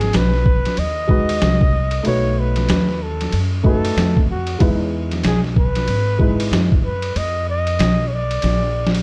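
Smoky and nocturnal, this jazz-hop excerpt pairs a breathy, whispered flugelhorn melody with a dark upright piano that stops at 6.8 seconds, a growly pizzicato upright bass, and an up-front, muffled trip hop sampler-style drum kit with overdrive and 12-bit grit that closes on a fill at 8.4 seconds, all set in light reverb.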